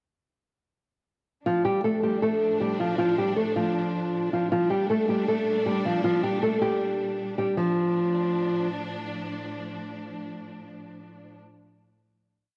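A thumb-plucked nylon-string guitar sits up front in this eerie, menacing hip hop and trap piece with a half-time feel. Its small, acoustic tone is softened by a low-pass filter as it plays a looping melody doubled in octaves, repeated like a sampled loop. Behind it, a distant symphonic string section holds lush, bowed chords with vibrato, forming a clear, focused, sustained ensemble pad. Both parts enter together at 1.5 seconds, and the guitar stops at 8.7 seconds while the strings carry the final chord until 11.4 seconds. The sound is dry and gritty, with transformer saturation, a small room ambience and light reverb.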